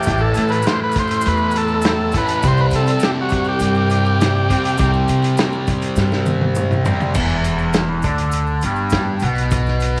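Psychedelic rock with a mysterious, hypnotic air, in which a buzzy, overdriven combo organ with heavy vibrato and tape echo sings an up-front solo until 4.9 seconds over a double-tracked, phaser-tinged fuzz guitar riff, a woody pizzicato upright bass, a muffled lo-fi vintage drum kit with a punchy kick that plays a fill from 6.0 to 7.2 seconds, and grainy maracas tucked in the background, all bathed in spring reverb as the passage settles onto E minor at 7.2 seconds.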